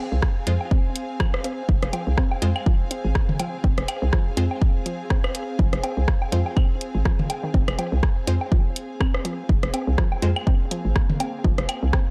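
Minimal techno at 123 BPM in F minor, this clinical, hypnotic 12-second cut holds on a single F minor chord over a swung 16th-note grid, driven by a punchy, up-front electronic kick, a house kit of hi-hat and rim click, and a booming analog drum machine adding claves, toms and woodblock with tape echo. A bouncy, knocking FM bass with tube saturation sits forward in the mix, while a hollow square-wave pluck riff, treated with chorus, phaser and tape echo, stays in the background beneath crisp, detuned wavetable chord stabs and a dark, bowed chamber string texture, with sidechain pumping on the pluck, bass and strings. At 9.9 seconds a very quiet, swarming granular drone on Bb3 creeps in, all within a dry, dark production.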